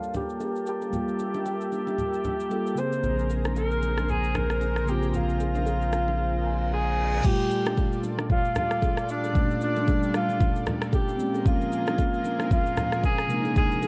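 Worn, warbling cassette-tape sound and light reverb wrap this soulful, deep amapiano clip, where a breathy, distant alto saxophone with light vibrato carries the melody over mellow tine electric piano, a lush detuned unison pad pumping to the sidechain, an up-front electronic drum kit of kick, rim click, shaker and crash, and bright bongos and congas in the background, while a filter sweep runs through the first half, a thick saturated sub bass sits up front from 3.0 to 7.2 seconds, and an electric piano fill and reverse cymbal occupy a silent gap starting at 6.2 seconds.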